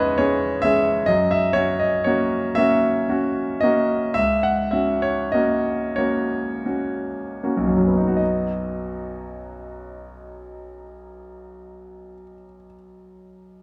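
Classical romantic nocturne excerpt for solo piano in B major and 12/8, nostalgic and tender, moving with rubato at a slow 25-45 BPM in dotted quarters, with a clear, natural concert grand placed up front with deep bass reaching from B1 to F#5, drifting from C#m/E through F#7 while slowing down until 8.2 seconds, then settling onto B for a new section that runs to 13.6 seconds, all bathed in a moderate recital hall reverb.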